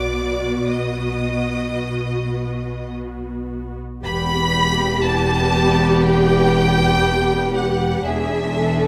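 A yearning, melancholic slow romantic movement for string orchestra in E minor, cut from a longer piece, opens with a rich, up-front violin section singing the melody with vibrato over a smooth-topped second violin line, dark woody violas, cellos set in the background and distant, even double basses, moving rubato at 53-60 BPM from B to E minor at 4.0 seconds and reaching E7 at 8.1 seconds within a moderate scoring-stage reverb captured by close, detailed microphones.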